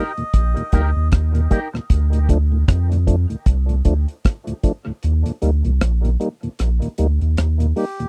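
Swung sixteenths in 4/4 drive this heavy, hypnotic dub reggae excerpt, where a dark, tight, up-front drum kit of hi-hat, kick and rim click (kick dropping out at 5.0 s) sits beside a round, deep sine sub bass, while a clear tonewheel organ through a stopped rotary speaker and dub echo carries the chords, a twangy, bright envelope-filtered guitar with chorus and echo flickers only at the opening, and a reedy, breathy melodica with dub echo voices brief melody at the start and again from 7.8 s, all captured in a dry, close 1970s-style studio sound.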